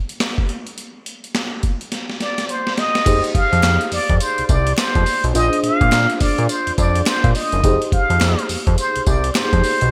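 A gritty, up-front sampler-style drum kit opens this confident, bouncy new jack swing cut, its thumpy kick, high-tuned snare, hi-hat, claps, tambourine and crash swung on the sixteenths and wrapped in gated reverb, with a drum fill at 1.9 seconds. A breathy, intimate trumpet with plunger mute takes the melody from 2.2 seconds with wah-wah inflections and vibrato. At 3.1 seconds a fat, detuned sawtooth bass with a moving filter and a worn, slightly out-of-tune electric piano with ensemble chorus join over Fm7 and Bb9 chords, dusted from 3.6 seconds by very quiet, crisp group handclaps in a bright 1980s-style digital production with plate reverb.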